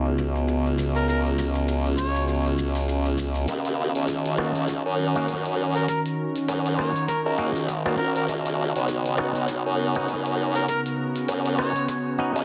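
A dense, heavily limited mix bathed in lush hall reverb carries this playful, funky glitch hop excerpt, where a nostalgic, detuned tape-like pad warbles up front beside a chorused, tube-saturated formant-sweep wobble bass, a stringy auto-wah clav adds filtered stabs with dub echo and 12-bit sampler grit, clicky glitchy drums play throughout while close, grainy maracas sound only until 3.5 s, an overdriven harmonica solo with light vibrato and tongue slaps enters at 1.0 s, and a pitched-down, thumpy electronic kick joins in the background from 3.5 s as the track builds.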